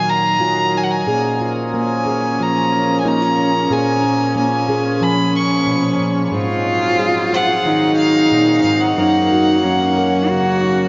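A straight 4/4 pulse at 91 BPM carries this acoustic folk-pop ballad, tuned to A4 = 442 Hz and cut from a longer piece, in an intimate, nostalgic mood. A fingerpicked nylon-string guitar plays classical-style accompaniment up front, while a hand-pumped harmonium holds reedy, breathing chords beneath it. A single bowed violin carries the melody sul tasto with a soft attack, its pure, floating tone sounding distant despite its forward placement, and it is trailed by delay. From 1.0 s a warm, expressive cello adds a close second line, bowed with vibrato and portamento and also touched with delay. The harmony moves from D#madd9 to A#m7, then to G#7 and F#. The mix is soaked in a huge ambient reverb, with a dreamy, darkened top end.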